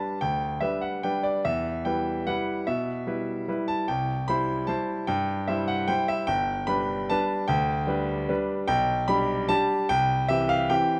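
A bright concert grand piano opens alone on a G major chord and carries this short classical waltz by itself, a sparkling, playful piece in 3/4 at 148 BPM with a rubato feel. The harmony moves from G through Em and C back to G, then to G/B and C by 9.9 seconds, with the piano spanning a deep bass G1 up to B5. Close, detailed microphones keep the smooth, vintage piano up front in light reverb, and the 11-second passage is cut from a longer piece.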